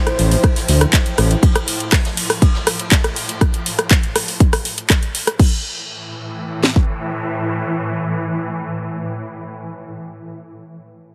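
Melodic techno at 121 BPM in A minor, this dark, cinematic fragment opens on a drop: a punchy, up-front house kit with cracking snare, metallic hats, handclaps and crash, its hats and cymbals pumping under the sidechain, while a rumbling detuned saw bass and a warbly, nostalgic tape-like pad are heard only until 1.4 seconds. A faint brush kit with a rolled-off top sits in the background, and a swarming, granular drone with its own reverb throbs tensely under sidechain pumping. After the shift from C/A to an A5 chord at 5.4 seconds the drums thin out and stop by 6.9 seconds, leaving the drone, heard through light reverb and a heavily compressed, radio-like sound.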